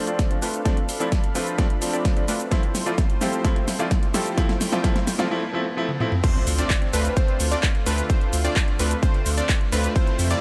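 A clear baby grand piano, a lush, warbling pad, a filtered supersaw stab riff and a deep, saturated sub bass open this uplifting, anthemic festival progressive house excerpt at 129 BPM, all pumping to the sidechain over a Dm7 to Fmaj7 build-up where an overdriven pop drum kit with a fat snare, metallic hats, handclaps, shaker, toms and crash fills around a punchy electronic kick, a very quiet riser arrives at 3.2 seconds, and the piano gives way at 6.2 seconds to a drop led by a catchy, mellow plucky lead playing dub-echoed arpeggios under light digital reverb.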